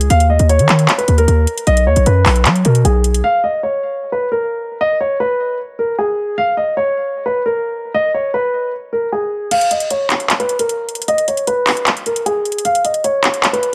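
This dreamy, wistful trap cut opens with a dark, mellow grand piano melody, a punchy 808-style bass and an overdriven, electronic drum kit all sounding together in a half-time feel. The piano sits up front with a deep low end softened by a low-pass filter, moving over D#5 and B5 chords. The heavy sine bass, layered with noise, has a fast attack and then decays, while the drums bring crash cymbal, handclaps and metallic hats. At 3.2 s the bass and drums drop away, leaving the piano to carry the melody alone. The drums return at 9.5 s with the kick muted, and the piano plays on to the end of this section cut from a longer piece, all set in a light reverb with a digital ambience.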